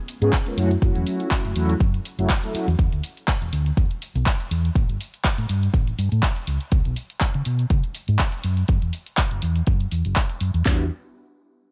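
The recording sounds close and fairly dry, with little room around it, in this groovy, nostalgic slice of filtered disco house cut from a longer piece, set in four with a light swing on the sixteenths. An up-front house drum kit carries a punchy kick, a cracking snare and handclaps with a tape-warm, small-room character and a touch of studio reverb. A dry analog drum machine layers more handclaps, hi-hat and shaker, its hats and percussion pumping against the sidechain. A dark, round hollow-body electric bass sits up front, amped and low-pass filtered, pumping as a filter sweep runs across it until 10.7 seconds. Mellow synth brass, brassy and detuned with sawtooth bite, chorus and phaser, plays sustained chords only until 2.7 seconds and then returns briefly at 10.6 seconds. The harmony moves from C#7 and F#m7 through open power and suspended chords before arriving on Em9 at 10.7 seconds.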